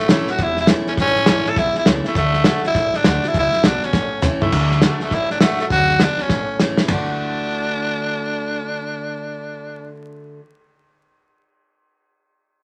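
Lightly reverberant and dusted with vinyl crackle, this upbeat, rollicking rockabilly cut swings at 203 BPM in D major, led up front by a raspy, gritty tenor saxophone melody with vibrato over a bright, full-bodied picked steel-string acoustic guitar and a woody, thumpy pizzicato upright bass, while a cloth-damped, thuddy drum kit with dark cymbals and a tight kick drives the groove with fills at 3.9 and 6.3 seconds before dropping out at 7.0 seconds.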